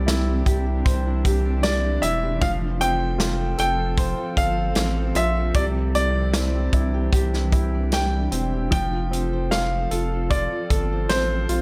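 Set in a small room with light reverb, this tender, hopeful pop ballad excerpt at 76 BPM in F major finds a clear, polished concert grand piano carrying the melody through tape echo over a woody upright piano with audible action noise, a cloudy granular pad, a full-bodied fingerpicked acoustic guitar in the background, a thick saturated sub bass up front, and a punchy natural country drum kit entering at 0.1 s, all moving between Cadd9 and F.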